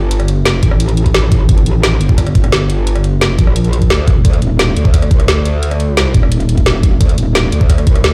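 The recording has a dry, tight core, yet it sounds as if played over a big sound system in a bare room, with a large studio reverb around it. This short cut from a longer dark technical drum and bass track feels mechanical and tense, driven by a straight, steady pulse. A metallic, wobbling bass opens at 0.0 s and stays up front: an aggressive FM tone with a sine foundation, fast attack and long sustain, saturated, compressed and thickened with chorus. The drum kit follows at 0.1 s, placed close and forward, its woody snare, metallic hi-hats and rim clicks layered and electronic in character, having been re-recorded in a small room. An overdriven electronic kick with a knocking punch joins at 0.6 s and sits as the loudest element.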